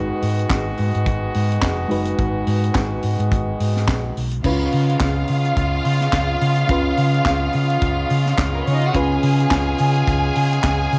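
Glamorous and joyful, this disco excerpt at 106 BPM with a lightly swung sixteenth feel pairs a reedy electric piano with a muted, nasal French horn section holding sustained chords over a round, dark hollow-body bass and a tight funk kit with a high-tuned snare, handclaps, hi-hat and crash, moving from G#m7 to C#7 as a lush, up-front bowed string section enters at 4.4 seconds, all set in light reverb and small-room ambience.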